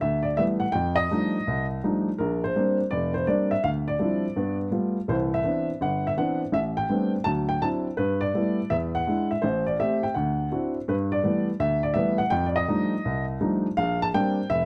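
A brisk swing at 166 BPM in 4/4 drives this solo jazz piano passage in G major, its eighth notes leaning into a lilting, swung feel. The only voice is an upright piano, heard up front and close, with a woody, intimate character, long sustain and the audible clatter of its action giving the sound a natural, lived-in quality. The harmony is rich with extended colours, opening on G6/9 and moving through F13 and Bb6/9 before circling through Dm11, G9, Cmaj9, Am11 and D9, then back through G6/9, E7 and Am7. At 10.9 seconds the opening progression returns, sliding again from G6/9 toward F13 and Bb6/9 as the clip ends at 14.7 seconds. The mood is warm and swinging, and a light reverb with detailed close miking keeps the playing warm and immediate in this short extract from a longer piece.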